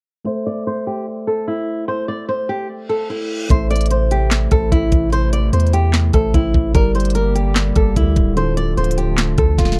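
A mellow, clean tine electric piano opens this menacing, hard-hitting half-time trap piece at 148 BPM in A phrygian, joined almost at once by a fingerpicked acoustic flamenco guitar melody with audible finger squeak, both low-pass filtered with plate reverb under a filter sweep until a reverse cymbal at 2.9 s leads into the full beat at 3.5 s, where a knocking electronic trap kit with sharp snare, crisp hats, handclaps and rim clicks, a deep sine 808 bass and a hollow, airy, chorused pad in the background arrive over chords moving from Am to Gm to Dm, capped by a drum fill at 9.6 s.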